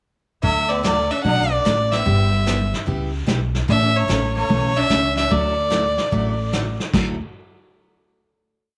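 A swung 4/4 groove drives this short, playful western swing tune, with a vintage brush drum kit sweeping the snare beneath punchy kick, hi-hat, dark cymbals and a crash, all set in a small, softly reverberant room. The upright bass sits up front with a woody, thumpy pizzicato, playing a two-beat root-and-fifth pattern with walk-ups. A dreadnought acoustic guitar picks four-to-the-bar rhythm with audible finger squeak. A clear, nasal fiddle carries the down-home melody in short song-like motifs with light vibrato. Just beneath it, a buzzing, shimmering sitar plucks a harmony line mostly in thirds. The band moves through D, G6 and A to a Dadd9, and after fiddle and sitar drop out at 6.5 seconds, the rhythm section rings out a final chord from 6.9 seconds.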